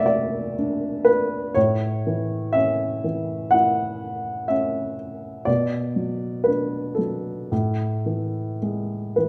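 Moving in a free, rubato 4/4, this brief, tender and peaceful fragment of lyrical classical solo piano features a dark, mellow baby grand placed up front with audible action noise and short sustain, drifting between B minor and A chords across the full 9.3 seconds in a moderate recital-hall reverb.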